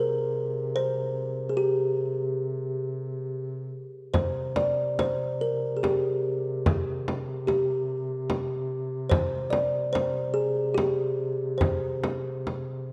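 A woody, ringing kalimba carries the melody up front in this solemn, longing Caucasian folk lament in a rubato triple metre, over a dark duduk drone with vibrato and scooped notes, while a close, dry frame drum enters at 4.1 seconds, all set in light reverb with a dark, warm production.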